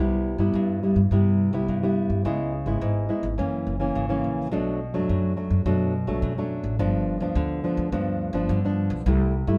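Up front, a thumb-plucked classical nylon-string guitar with audible finger squeak carries the chords from Cmaj7 through C#m7, F#7, Bm7 and G7 to C6, while a woody pizzicato upright bass on steel strings plays beneath it throughout this lively, sunny samba-and-choro passage at 106 BPM in straight 4/4, the two players heard together in one room with a wet studio reverb.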